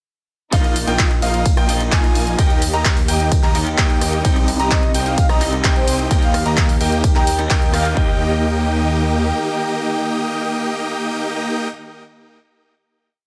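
Anthemic and uplifting, this short festival progressive house piece hits a drop from the start, driven by a punchy up-front kick on four-on-the-floor and a programmed kit of claps, rim clicks, hi-hats and ride, with a thick, saturated detuned saw bass pumping under a huge, euphoric supersaw lead playing dotted-rhythm chords in open voicing. Behind them sit a clear, intimate grand piano doubling the chords in arpeggios, a twangy, slightly broken-up electric guitar with tremolo and held chords with syncopated pushes, and a dark, woody string section sustaining a lush pad, while a breathy flute-like synth lead adds short answering phrases from 4.7 to 8.0 seconds. The drums drop out around 8 seconds, the bass shortly after, and the remaining parts ring out on a final chord until 11.7 seconds in light, digital reverb.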